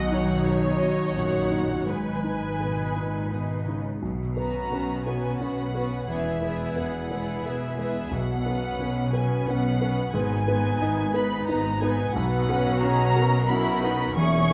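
A moving, bittersweet cinematic film score excerpt for orchestra at 88 BPM in a rubato 3/4, moving from G# minor into B major at 4.0 s. Throughout, veiled con sordino violins carry the melody over a second violin line and soft-attack violas, a polished grand piano sits in the background, a very quiet harp rings with bright fingerpicked arpeggios, and muted cellos and distant double basses hold the bass, all set in a wet scoring-stage reverb.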